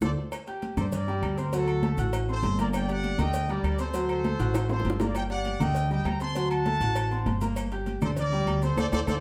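A growly, thumpy upright bass sits up front in this driving, danceable salsa excerpt at 199 BPM in G harmonic minor, anchoring a Gm–D7 progression beneath a tight trumpet section carrying the melody with light vibrato and plate reverb, a smooth vintage concert grand piano in accompaniment, and a background bed of damped high-tuned congas, tight high-tuned bongos and cowbell, ringing timbales and agogo bells, woody claves and grainy maracas, the mix heard from further back in a large, reverberant studio, with a drum fill at 4.4 seconds and a band accent closing at 8.8 seconds.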